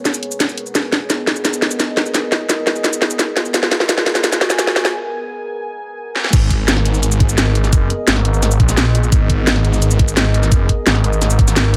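An up-front mix with light reverb and a filtered low end opens this excerpt of dark, technical drum and bass at 172 BPM in G# minor, with a mechanical, aggressive mood. A deep, moody ambient pad holds sustained chords throughout, its wave-folded, ring-modulated tone softened by chorus and reverb and pumping against the sidechain, beginning on a G#madd9 chord. The layered electronic drum kit builds from the start with a fill of cracking snare, bright hats, cabasa and crash cymbal, giving way to a break at 4.9 seconds. At 6.3 seconds the drop arrives: a knocking electronic kick joins, and a snarling, growling saw bass enters low and in front, thick with distortion and tube saturation and marked by a moving notch. The drums carry a small-room, re-recorded character that keeps them close.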